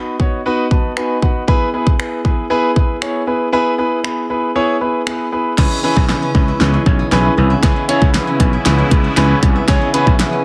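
A straight 4/4 pulse at 117 BPM drives this bittersweet yet confident dance-pop excerpt in C# minor, where an intimate, up-front grand piano with audible action noise pumps against a punchy electronic kit with a fat, softly clipped snare; the kick drops out at 3.5 seconds, and at 5.6 seconds a build-up and drum fill bring in growly overdriven slap bass, an airy detuned sawtooth pad in the background and a faint, silvery fingerpicked zither playing arpeggios, set in light digital ambience within a dense, heavily limited master.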